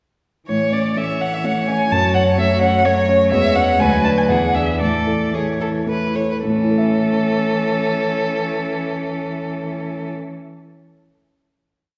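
In a straight 3/4 at 108-128 BPM, this cheerful, lively classical-period movement for piano quartet in A major has a rich, expressive violin singing the melody up front with vibrato and portamento over a second violin's clear, focused sustained chords and phrase-end answers, a smooth, distant cello, and a warm concert grand piano rocking two-note chords above a deep bass, all set back in a wet scoring-stage reverb as the theme slows from 2.6 seconds into a final chord at 6.4 seconds.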